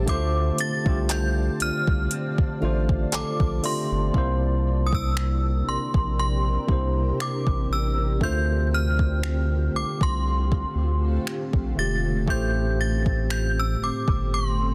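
Contemporary R&B at a slow 59 BPM in D minor, this moody, sensual excerpt from a longer piece moves through Dm7, C7 and Am7 over an up-front saturated sub bass and an overdriven electronic drum kit of soft kick, metallic hi-hat, finger snaps and handclaps with a light 16th-note swing. A worn, slightly out-of-tune tine electric piano carries the accompaniment beneath a cloudy, detuned granular pad with its own reverb, while a chiming, inharmonic FM synth melody rings high with chorus and tape echo. In the opening seconds a bright, fingerpicked nylon-string guitar with finger squeak arpeggiates through tape echo in the background until 4.8 s, joined from 1.1 s by a very quiet, dark round pluck, all within a dense, heavily limited digital ambience.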